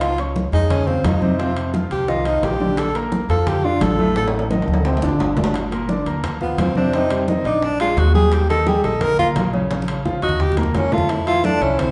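Heard from further back in a large, reverberant studio with the highest frequencies rolled off, this sunny, danceable Afro-Cuban jazz excerpt sets a breathy, intimate tenor saxophone up front, soloing with vibrato and a soft attack, pausing at 4.3 seconds and returning at 6.4 seconds. A clear concert grand piano with deep bass comps underneath while a woody, thumpy pizzicato upright bass anchors the harmony through jazzy seventh and suspended chords. In the background, hard-handed congas, ringing metal-shelled timbales and very quiet, round bongos keep the groove moving, with drum fills around 4.2 and 9.7 seconds.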